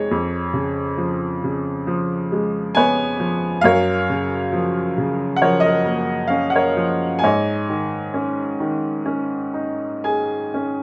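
Warm and peaceful, this brief classical fragment, cut from a longer piece, presents a lyrical solo piano in 4/4 with an unhurried rubato feel. A clear upright piano carries everything alone from 0.0 to 10.8 seconds, its woody tone ringing with long sustain and sitting up front in the sound. The harmony drifts from Db7/F to Gbmaj7 at 3.6 seconds and settles onto Absus4 at 7.2 seconds, ranging from F2 up to Ab5. Near the close, at 9.6 seconds, the piano adds a short fill. A light reverb lends the recording a soft sense of space.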